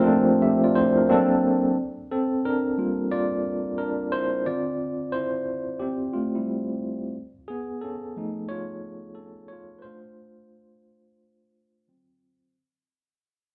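Sultry and soulful, this R&B excerpt is carried entirely by a tine electric piano playing solo, with a relaxed swung sixteenth-note feel in 4/4. The instrument sounds worn and slightly out of tune, lightly overdriven and pushed through a combo amp, with a fast tremolo shimmering across its tone as it sits up front in the mix. It ranges from Bb2 up to E5, opening on a brief passage over Bbmaj13 and D7b13 before settling into a longer section that moves through Gm7, Dm11, Faug7 and Bbmaj9, then closes on D7. From 1.8 seconds the piano begins fading out, the fade running through to 12.5 seconds. A generous, wet reverb from a large studio room wraps around the piano, giving the live-in-the-room performance a lush, spacious sense of air.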